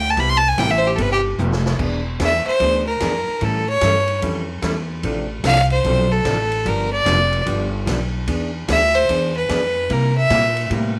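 Western swing country at 148 BPM with a swinging, down-home feel, led by a clear, biting fiddle that carries the melody up front with light vibrato and intense bowing, soloing throughout this short cut from a longer piece. A woody, thumpy pizzicato upright bass on gut strings sits close beneath it, while a dark, clean hollow-body jazz guitar picks out chords such as Cmaj7, E7b9 and A7. A distant, roomy big-band drum kit with a punchy kick swings on ride, hi-hat and snare, adding a fill at 1.4 seconds, all under light reverb.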